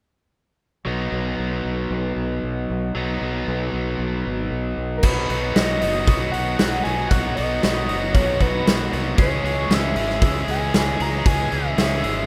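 This rough home demo has a dry sound, with the guitar and drums sitting up front. It is a moody, bittersweet piece of indie rock in straight 4/4 at 116 BPM, cut from a longer song. From 0.9 seconds a cranked stack guitar plays an overdriven, picked riff with a bright edge, over a growling fingered electric bass that is also overdriven and amped. The harmony moves from B to C sharp minor. At 5.0 seconds a big acoustic rock kit comes in, with a punchy kick, a medium-tuned snare, hi-hat and crash, recorded naturally in a big room. At the same moment a screaming, guitar-like synth lead takes the melody, its gritty sawtooth and pulse tones thickened by detuning, chorus and vibrato, and it carries on to the end at 12.3 seconds.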